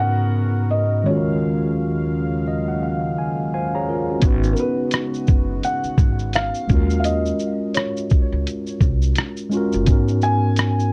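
Hazy and reflective, this lo-fi hip hop excerpt in G# minor sways at 85 BPM with a swung sixteenth feel, as a soft, felt-muted upright piano carries the melody through analog delay over a mellow tine electric piano on cassette tape that plays a fill from 2.1 to 4.2 seconds, and a smooth, detuned analog pad with chorus holds chords until 7.0 seconds, while a woody pizzicato upright bass and an up-front, muffled, compressed sampler-style drum kit of thumpy kick, hi-hat, rim click and shaker with 12-bit grit enter at 4.2 seconds, set in a small room with cassette tape coloring.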